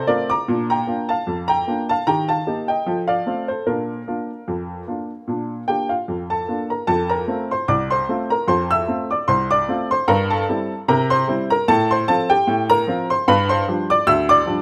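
Lightly swung in a jaunty 2/4, this lively ragtime excerpt, cut from a longer piece, features a solo upright piano that sounds woody, worn and slightly detuned, with short sustain and an up-front presence in a small room on a rough home demo mix, shifting into a new section at 6.9 seconds.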